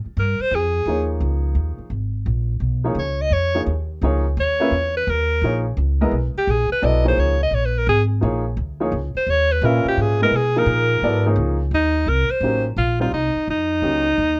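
Swung eighth notes in 4/4 drive this intense, hypnotic jazz excerpt, cut from a longer piece. A woody pizzicato upright bass with steel strings starts at once, and a bright alto saxophone takes a solo from 0.2 seconds with light vibrato and scooped notes, while a warm, natural-sounding upright piano adds accompaniment from 0.9 seconds. Light reverb gives the up-front trio a little space, and the harmony shifts to a new suspended chord at 12.1 seconds as a new section begins.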